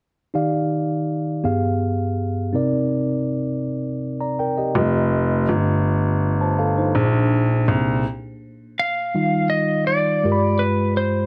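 Gospel in 6/8 at a slow 55 BPM, this hopeful, soulful excerpt in Eb major opens on a mellow tine electric piano moving through rich chords such as Ebmaj9 and G7b9, joined at 4.8 seconds by the low register of a clear, intimate baby grand piano with audible action noise carrying the bass, then pauses in a stop before a bright, twangy lap steel guitar takes the melody at 8.8 seconds, all set in a moderate plate reverb.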